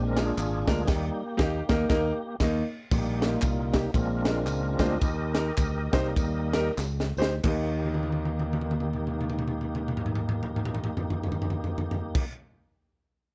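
This soulful, reverent uptempo gospel excerpt in Eb major opens with a tonewheel organ soloing over sustained chords through a fast rotary speaker with light overdrive and chorus vibrato. From the first moment it sounds together with an intimate grand piano with audible action noise and deep bass and a fingered electric bass. Moments later come a crisp, up-front acoustic drum kit with a high-tuned snare and tight kick, plus close, dry tambourine and group handclaps. The swung 4/4 groove moves between 89 and 118 BPM: a band accent hits under the organ early on, and the tempo slows from 2.9 seconds. A drum fill arrives at 6.8 seconds, and further fills carry most of the final section from 7.8 seconds, all in a studio reverb.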